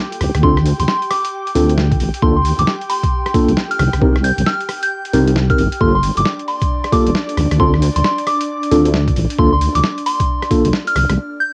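A deep, wobbling sawtooth bass sits up front in this moody, skippy two-step garage excerpt at 134 BPM, its dark, detuned tone carrying a Dm7, Bbmaj7/D, Cm7 and Gm9 progression under a swung 16th-note feel. Gritty, pitched-down, sampler-style drums with a thumpy electronic kick, hi-hat, rim click and a medium-tuned snare take on a tape-softened grit, while a mellow tine electric piano plays stabs through analog delay. A pure, gentle FM bell melody floats high above an airy, breathy pad that pumps under sidechain, all in a light-reverb home cassette sound before a short break at 11.2 s.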